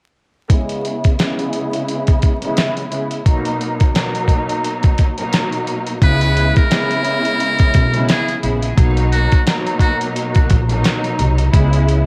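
Boom-bap hip-hop in C# dorian at 87 BPM with a 16th-note swing, tough and moody, cut from a longer piece and colored by cassette tape, vinyl crackle and a light studio reverb. A gritty, compressed sampler-style drum kit with a thumpy kick and fat snare runs throughout beside a dark, veiled con sordino string section whose filter sweeps through the first 6.0 seconds over C#m7 and Bmaj7. At 6.0 seconds a woody pizzicato upright bass enters, and a buzzy, breathy trumpet with a metal mute plays a jazz-style solo line through its analog delay until 10.0 seconds.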